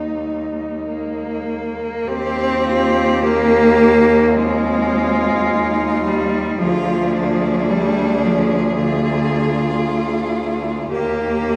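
A clear, smooth and even cello stands up front in the middle register, carrying the accompaniment through this serene, lyrical classical passage for cello ensemble in Eb major. It moves at a slow, rubato 50-57 BPM in 4/4, supported by a focused bass cello, also up front, while a rich, close cello sings a second line and a more distant cello carries the melody, all four bowed with vibrato. The harmony drifts from Eb through Fm7/Eb and Ddim before settling back on Eb at 10.9 seconds, the whole cut from a longer piece and bathed in the wet reverb of a recital hall.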